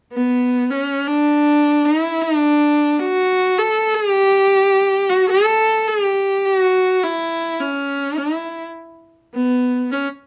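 A rich, bowed solo viola sits up front and plays smooth, even lines with vibrato from 0.1 to 10.1 seconds in this dreamy, languid Hawaiian passage in free time and D major, tuned to A4 = 442 Hz, set in a dark production with moderate small-room reverb and cut from a longer piece.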